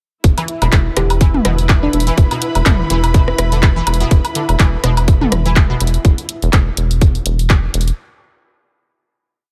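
A digital ambience surrounds this short minimal techno piece, which feels cool and hypnotic from its first moment and holds one drop for its whole length. An up-front, tight, tape-warm kick thumps four-on-the-floor with a large-room weight, and a tape-warm analog drum machine adds programmed closed hats and a clap backbeat on a swung groove. A rubbery, hollow square bass bounces through a syncopated riff, pumping under the sidechain. A juicy, squelchy blip pluck repeats a bright 7-step sequence that drifts against the bar, coloured by ensemble chorus, 12-bit sampler grit and dub echo. An overdriven electronic kit scatters rim clicks, low toms and woodblock in cross rhythm through dub echo. In the background, a dark, woody string section bowed with vibrato shifts its chords slowly, a pulsing gated texture holds a high note in chorus and reverb until about 6.1 seconds, and a round, keys-like FM lead offers short answering phrases between 1.0 and 2.0 seconds.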